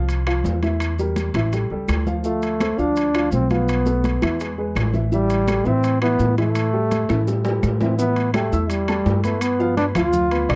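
A woody upright piano and a dark, thumpy pizzicato upright bass open this passionate, driving salsa fragment, joined almost at once by bright congas, grainy maracas, ringing, distant timbales and background claves, before a warm, punchy trombone with vibrato takes the up-front solo melody at 2.2 seconds and carries on through a drum fill at 7.1 seconds into a new section at 8.0 seconds, all captured in a dry, close 1970s-style studio sound with light reverb.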